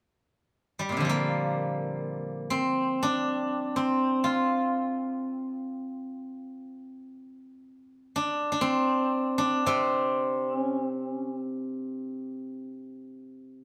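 Chinese traditional solo plucked-string music in free time, this flowing, elegant piece is set in the C shang mode. A steel-string zither plays alone from 0.8 seconds, sitting up front with a bright, silvery, ringing tone from fingerpicks across a low-to-middle range. A moderate stone-room reverb surrounds it in this short cut from a longer piece, which ends at 13.6 seconds.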